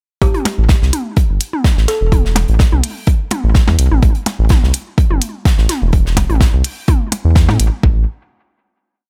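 An overdriven electronic kick drum sits up front in this hypnotic, cool minimal techno piece, holding a deep four-on-the-floor pulse at 126 BPM in A minor with a light swing on the 16ths. Beneath it, a round, dark analog bass built from sawtooth and sine tones plays a syncopated riff with a fast attack and sustained notes, pumping against the kick. A plucked, woody kalimba adds short phrases with a gritty 12-bit sampler character and delay, appearing only from 0.2 to 2.6 seconds. Clicky, overdriven electronic hats carry the programmed backbeat, while layered electronic toms and percussion blips scatter clicks in cross rhythm through overdrive, reverb and delay. Far back in the mix, an airy, polished acoustic kit adds a looped breakbeat with edits, its hi-hat filtered and pumping and its medium-tuned snare thinned by a high-pass filter. The groove runs until 7.8 seconds, then a final note rings out to 9.1 seconds.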